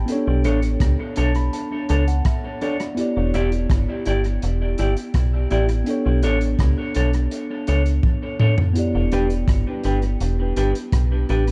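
A worn, slightly out-of-tune tine electric piano and a metallic FM bass open this lovers rock reggae excerpt, the piano slipping into a mellow fill from 0.8 to 3.0 seconds while the digital bass sits up front with fast, decaying notes over a Bm9 to Em7 progression. A crunchy breakbeat drum kit of hi-hat, kick drum, rim click and toms joins almost at once, saturated and gritty with a tight kick and a rolled-off top, and drops a fill at 8.0 seconds. Clean, picked stabs from a semi-hollow electric guitar, carried by tape echo, complete a dark, smooth and longing mix set in a small room.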